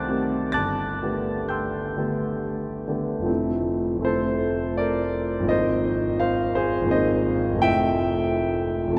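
Impressionist classical solo piano in a luminous, hazy mood, this excerpt has a clear concert grand, deep in the bass and up front with long sustain, drifting in rubato 3/4 at 63-90 BPM through chords such as Cm6, Gadd9, Fmaj7 and Ab69 as the key moves from G major to F major at 3.3 s, all bathed in a wet cathedral reverb within a dark, warm production.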